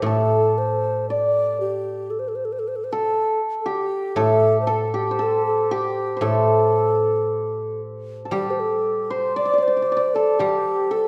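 A breathy, reedy bamboo xiao carries the melody up front in this wistful, tender piece of Chinese traditional chamber music, its crisp attack and straight tone sitting close to the ear. A shimmering hammered dulcimer plays a second line in the same register, while a silvery guzheng, plucked with fingerpicks, supplies ringing accompaniment beneath, all three sounding throughout this 11.1-second fragment of a longer work. The playing moves in a rubato 2/4 around 58 BPM in the A yu mode, a moderate recital-hall reverb surrounds the ensemble, and the music turns to a new section at 8.3 seconds.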